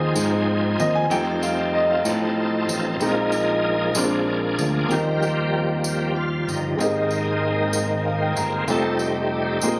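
A shouting, up-front tonewheel organ with key click, chorus vibrato and a slow rotary speaker holds sustained chords through this jubilant, hopeful slow gospel passage in 6/8 at 63 BPM in Eb major, while a natural-toned grand piano solos for the first 4.9 seconds before the organ takes over the lead and the piano adds a fill at 7.7 seconds, over a direct fingered electric bass and a jingly, close tambourine, captured on a phone in a lightly reverberant studio room.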